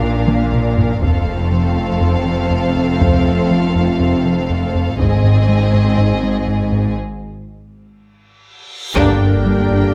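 A rubbery, bouncy square-wave bass riff drives this brooding, tense hybrid orchestral and electronic film cue at 121 BPM, supported low by rich bowed cellos and double basses while dark French horns and a swirling, detuned analog pad with phaser and chorus sustain chords beneath lush violins carrying an expressive vibrato melody over a second violin line and focused violas. Heavy-stick taiko drums pound from 0.3 to 5.5 seconds, drop out for a break, then a reverse cymbal rises into a huge impact at 9.0 seconds, where a distant, very quiet trombone section joins on a G minor accent. The cut has the sheen of close, detailed microphones in a moderate recital hall, moving from Bb through F and Ab.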